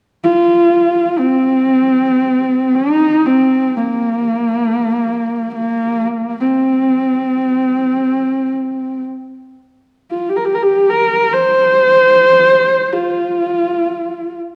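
A lone horsehead fiddle, dark, woody and husky, sits up front with vibrato and portamento from 0.2 to 14.3 seconds in this windswept, solemn Mongolian traditional excerpt, its bowed horsehair strings carrying a slapback echo into a wet concert hall reverb, all heard through the worn, warbling pitch drift of an old cassette tape.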